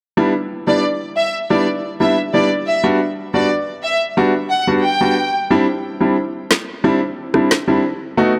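A rich, lush studio violin section carries the melody between D5 and G5, bowed with vibrato and a smooth top, its focused ensemble tone set up front and trailed by a digital delay from 0.7 to 5.3 seconds. This short dancehall excerpt moves at 90 BPM in a straight 4/4, sultry and tough in mood, centered on E minor. Underneath, a clear, polished baby grand piano plays accompaniment in its middle register, present and up front across the harmony of Em7, Gmaj7 and Cadd9. An electronic snare drum with rim click enters at 6.5 seconds, its woody, produced snap sitting forward in the mix for a brief moment. The whole piece sits in a moderate hall reverb with a dark production sound, giving the parts a lingering, velvety space.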